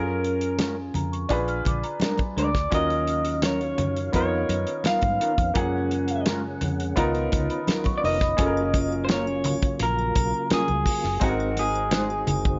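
A straight 4/4 groove from a damped, up-front 70s drum kit with a fat snare and tight kick anchors this romantic slice of lush 1970s-style soul, as a slightly broken-up, compressed electric guitar through a small old amp sings the melody over a clear baby grand piano, a round, foam-muted vintage bass, a dark, clean guitar riff with subtle chorus and very quiet congas, while a bell-like celesta glints in the background from 0.9 seconds, a mellow tonewheel organ with slow rotary speaker slips in at 2.7 seconds, and a shimmering triangle joins at 8.4 seconds, all within a light small-room reverb.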